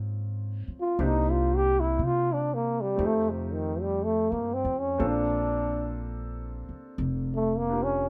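A smooth, vintage-toned grand piano and a woody, dark upright bass open this short, late-night jazz ballad excerpt together, moving at an unhurried, swung pace with a tender mood. The pizzicato bass, played on gut strings, sits up front with a thumpy low end, while the piano supplies quiet accompaniment beneath it. At 0.8 seconds a warm trombone enters up front with the lead melody, playing as a jazz-style soloist. The harmony drifts through Db6, Cm7 and F9 before settling on Bbmaj9, and a light reverb gives the recording an intimate sense of space.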